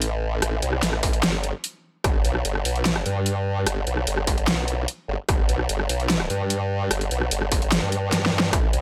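Heavy wobble dubstep at 148 BPM in a menacing half-time 4/4, where an up-front, saturated formant-sweep wobble bass with chorus and overdrive growls between G1 and G2 over a dubstep kit of bright hats, rim click and huge snare, joined at 1.0 seconds by a distorted, tape-warm electronic kick, all set in digital ambience, with a drum fill at 8.1 seconds near the close of this excerpt cut from a longer piece.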